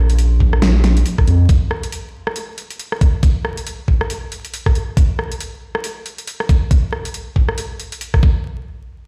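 A swung, half-time groove drives this dark, meditative deep dubstep cut, where a barely audible, warbling, chorused pad and a thick, saturated sub bass sustain a single chord until 1.5 s, leaving a tape-warm electronic kit of bright hi-hats, rim clicks and a huge snare, joined by a knocking, up-front kick from 0.4 s, to carry on through a bare stone room touched by vinyl crackle.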